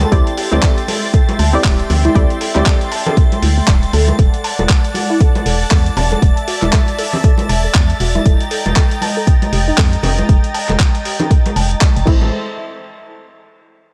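Swung sixteenths at 118 BPM drive this deep, hypnotic deep house excerpt, where an up-front, layered electronic kick and a gritty, compressed sampler-style kit of hi-hat, handclaps and crash sit with ringing, hard-hand congas alongside a hollow, dark organ-like FM bass, a smooth detuned analog pad and a shimmering string-machine violin layer in the background, each pumping from sidechain, while a lo-fi, warbling pluck arpeggiates through tape echo and a filter sweep, and a muted, detuned dub chord stab with tape echo appears from 0.1 to 3.5 seconds and again at 12.1 seconds as the harmony moves from D9sus4 through E9sus4 and F9sus4 to A minor.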